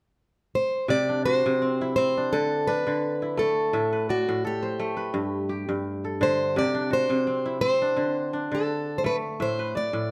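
Set at 85 BPM in 4/4, this piece moves with a gentle 16th-note swing that keeps it flowing and hypnotic. It is a short cut of a longer West African traditional piece in C lydian, tuned slightly high to A4 = 441 Hz. A fingerpicked, plugged-in steel-string acoustic guitar enters at 0.6 seconds with a warm concert tone, carrying the melody between F#4 and D5. The kora joins at 0.9 seconds with bright, ringing, crisp arpeggios spanning G2 to E5. Both instruments sit up front over the cycling chords C, D5, Am and G. Close, detailed microphones and light reverb give the sound an intimate clarity.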